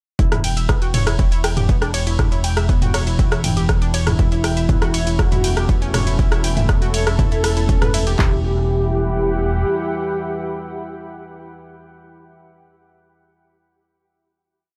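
Soaked in echo with light digital ambience, this short, dark and cinematic melodic techno piece in E dorian runs at 120 BPM, opening on a punchy analog drum machine with a four-on-the-floor kick, claps and floor tom, while a second small-room drum machine adds tape-echoed hats, ride, rim and low tom over a fat, detuned sawtooth bass holding a pumping E root. A round, warbling vintage pluck cycles a 16-step sequence through chorus and tape echo, a very quiet resonant drone with moving overtones creeps in at 1.3 s, and from 4.2 s a thick, bold unison lead with vibrato repeats a mellow riff as the harmony moves from Em to A/E. A deep, moody, evolving pad joins at 5.0 s, and once the drums stop the piece settles onto a sustained Emadd9 final chord from 8.2 s.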